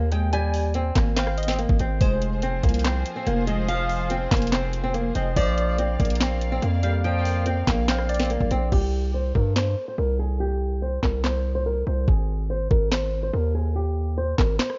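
A half-time trap groove of knocking kick, sharp snare, handclaps, rim clicks, crash and bright hats drives this brooding, eerie hip hop excerpt, where fingerpicked flamenco guitar carries the melody over a heavy, aggressive distorted 808-style bass, a glassy, detuned wavetable pluck adds a chorused, delayed second line until 8.3 seconds, and soft, floating bowed strings hold sustained chords from 2.0 seconds, all under a worn, warbling cassette-tape haze, until at 8.7 seconds the hi-hats drop out and a filter sweep moves over the guitar before a break at 14.6 seconds.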